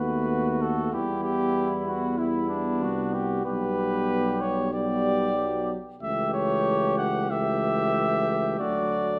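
A soft-attacked trumpet with a smooth top leads this triumphant, stately classical brass quintet excerpt at 94 BPM in 4/4, phrased with a rubato feel. Beneath it, a flugelhorn with light vibrato carries a second line, a mellow French horn and a close-miked trombone supply accompaniment from the background, and a present, warm tuba anchors the bass, all five playing throughout the 9.2 seconds. The harmony moves from B7/D# through Em, G/B and A7/C# to land on D, set in a moderate recital hall reverb.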